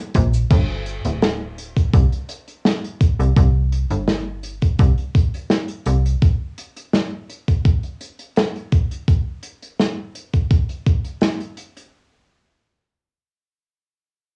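An overdriven electronic kick leads this melancholic, woozy vaporwave excerpt, its thumpy, sampler-style hit sitting up front with the grit of cassette tape and the boxy feel of a small room. Beneath it, an acoustic drum kit played with bundle sticks adds a medium-tuned snare, hi-hat, crash cymbal and cabasa, also colored by tape and placed close in the mix. A slap-like FM bass supplies a snappy, metallic attack that decays, moving between D1 and C2 before it stops at 6.2 s. The kick carries on until 11.0 s, and the kit plays through to 11.9 s, where the music passes into a new section. The whole recording has a homespun cassette character, with light reverb and a studio ambience around the steady, straight 4/4 groove.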